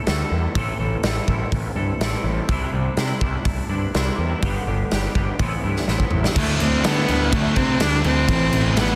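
Quiet-loud alternative rock at 124 BPM in 4/4, dark and angsty, this short excerpt opens with a twangy, clean electric guitar playing arpeggios through ensemble chorus over a fuzzy, overdriven picked bass and a punchy, up-front arena drum kit with a big natural room sound, moving through Dsus2, Am, Cadd9 and G. After a drum fill at 5.9 seconds, the guitar arpeggios stop at 6.4 seconds and the heavier section arrives: a biting, intense bowed cello takes the melody up front with vibrato and analog delay, backed by a bright, scooped high-gain guitar riff in the background and a pair of thick, very quiet fuzz guitars, one double-tracked. The dense, heavily limited master sits in a small room ambience.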